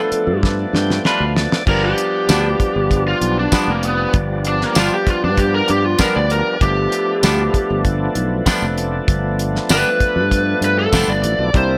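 A dark, lo-fi lead guitar pushed through a small cranked amp carries this gritty, soulful soul blues, its overdriven line stepping into a solo at 1.7 seconds and running to the end of the 11.8-second excerpt. Beneath it, a thick overdriven tonewheel organ with audible key click turns through a slow rotary speaker, adding a fill alongside a drum fill from 0.4 seconds before the solo begins. A growly, sustaining fretless bass with analog chorus sits up front, while a damped 70s kit brings a fat snare, tight kick, dark cymbals, hi-hat, crash and tambourine with a rolled-off top. A bright, twangy clean electric guitar with a scooped tone adds stabs with slapback echo from 1.1 seconds. The groove moves at a straight 97 BPM in 4/4 over G7 in G mixolydian, set in light reverb and studio ambience.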